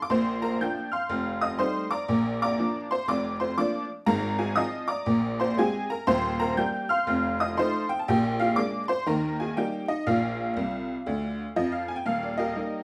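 Exuberant and playful, this stride piano jazz excerpt swings along at 120 BPM in 4/4, its eighth notes pushed into a lively lilt. A solo tack piano carries the whole 12.8 seconds, its metallic, jangly tone sitting boxy and up front while spanning from deep bass notes up into the high treble. The harmony starts in Bb major and moves to Eb major at 4.1 s, passing through chords such as F9, Bb13 and F7 before settling on Eb. Between 10.6 and 12.0 s a honky-tonk fill adds a rowdy flourish. Tuned to A4 = 436 Hz and set in a moderate studio reverb with a layer of vinyl crackle, the recording has an old-time, dance-hall charm.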